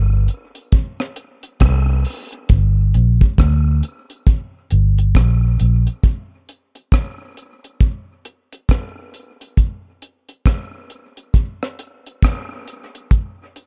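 A round, foam-muted electric bass with a vintage, amped tone sits up front in this heavy, deep dub reggae excerpt, holding low between G1 and D2 until it drops out at 5.9 seconds. A deep, acoustic reggae kit with a tight kick, hi-hat and rim click enters at 0.3 seconds and carries on alone through the second section to 13.7 seconds, keeping a slow 68 BPM 4/4 pulse with a swung sixteenth-note feel. The sound is dry and dark, with little reverb and tuning set to A4 = 444 Hz.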